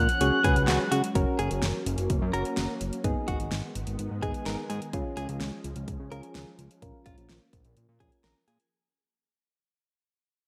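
Synth-pop at 127 BPM in F# major, wistful and bright, this excerpt opens with a brief round octave-layered synth lead with chorus and slapback echo that stops at 0.9 s, over a fat, saturated analog bass, a silky phased string machine in the background, punchy pop drums with gated reverb and handclaps, mellow chorused electric-piano-like keys and a clean, direct picked guitar line with slapback echo, all in a lush hall as the chords move from C#sus4 through F#, G#m, C# and A#m while a filter sweep and fade-out run from 1.2 s to the end.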